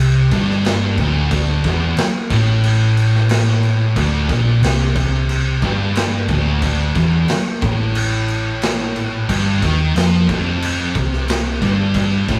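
Three picked, fuzz-distorted guitars, one of them double-tracked, grind out a brooding, hypnotic D minor riff from the background alongside a round, dark hollow-body bass with tube saturation, before a gritty, up-front garage drum kit with a punchy kick, snare and crash joins at 0.3 seconds in this stoner and doom metal excerpt at 90 BPM, all captured in a rough rehearsal-room recording as the D5 chord gives way to G5 at 9.3 seconds.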